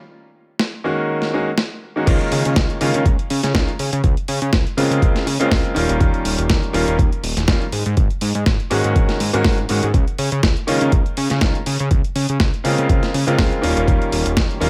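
This feel-good, groovy nu-disco clip opens at 0.6 seconds with a dusty, sampler-style soul drum kit of crash cymbal, hi-hat and a medium-tuned snare, compressed and gritty with overdrive. A bright grand piano follows almost at once, brilliant, intimate and polished, with audible action noise, long sustain and a tape echo, voicing the chords up front over an Ab9sus4. At 2.1 seconds the drop arrives as a fat, thick analog bass and a thumpy, overdriven electronic kick enter together. The bass is a detuned sawtooth with a fast attack, a decaying tail, a filter sweep and sidechain pumping. Set at 122 BPM in 4/4 with a 16th-note swing of 55% in Db major, the groove cycles through Db6, Bbm9/Db and Eb7 before returning to Ab9sus4. The sound is dry, with little reverb, and the piece is cut from a longer track.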